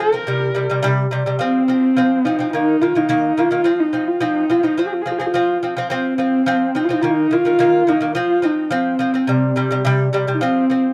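A dark, husky horsehead fiddle carries the melody up front, its bowed horsehair strings sliding between notes with vibrato, a soft attack and a smooth top, while a bright, delicate fingerpicked lute with double gut strings spins arpeggios beneath it. This Mongolian folk excerpt moves at 106 BPM in a straight 4/4, sounding windswept and solemn over chords of C5, F5 and Eb5, with a repeated section starting at 5.9 seconds. The close, dry 1970s-style studio sound sits in a modest booth ambience, cut from a longer piece.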